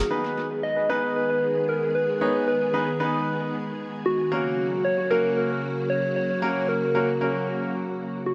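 A nocturnal, melancholic pop fragment opens with a round, gentle FM lead carrying the melody, treated with chorus and dub echo, over a brilliant concert grand piano with deep bass and its own dub echo. Beneath them, a silky, vintage string machine holds slow-blooming chords through an ensemble chorus, sitting up front alongside the piano. The mix is echo-heavy with a moderate plate reverb, and the piano drops out at 7.8 s while the lead and strings carry on to the cut at 8.3 s.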